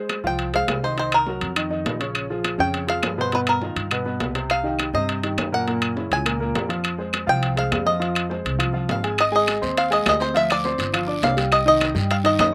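A warm, present grand piano opens this fiery, driving Afro-Cuban jazz excerpt at 205 BPM in F minor, joined at once by ringing metal-shell timbales up front, woody claves in the background, dark pizzicato upright bass, and a bright, twangy bluegrass banjo played with fingerpicks carrying the melody up front, with slapback echo on the piano, timbales and banjo, before the music turns to Ab major at 9.2 s, where a raspy guiro slips in quietly behind, the whole recorded dry outdoors.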